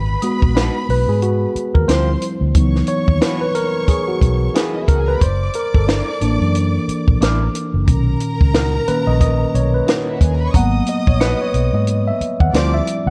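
A worn, slightly out-of-tune tine electric piano takes the lead up front in this bittersweet, cinematic stretch of lush 1970s-style soul, cut from a longer piece, with a gently swung groove. Beneath it sit a dark, round, foam-muted fingered electric bass and a compact cocktail drum kit with a high-tuned snare and tight kick, while a bowed violin section adds a smooth, vibrato-rich second line. Farther back, a twangy, slightly broken-up electric guitar picks a riff, and a bell-like, airy celesta adds delicate texture from 0.2 to 2.2 seconds and again from 7.2 seconds, all in a small room.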